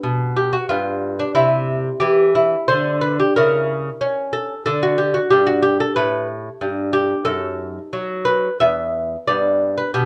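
The recording has a dark, warm production with moderate studio reverb and lossy compression artefacts. This brief excerpt is a grave, flowing baroque-style dance in G major, set in 3/4 at 91 BPM and played with a rubato feel. A solo fingerpicked lute carries the whole 10.1 seconds, placed up front. Its nylon strings, paired courses and some octave-doubled strings give the acoustic tone a delicate, warm character, ranging from E2 up to E5. The harmony moves from G through C and C#m6, pauses briefly on an unharmonised moment at 4.7 seconds, then passes through G5, F#m6 and E5 before settling back on G.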